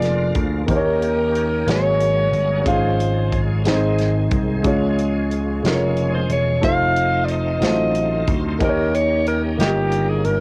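Set in a slow 6/8 with a straight feel, this uplifting, jubilant gospel fragment rests on a punchy, amped vintage slap bass and a modern studio drum kit of hi-hat, medium-tuned snare and punchy kick, its sound colored by cassette tape. A breathy alto saxophone carries the melody with light vibrato, sitting up front yet roomy, while a woody upright piano accompanies with audible action noise. Beneath them, a bright, shouting tonewheel organ holds sustained chords through chorus vibrato and a slow rotary speaker, all captured as a home cassette recording with moderate booth ambience.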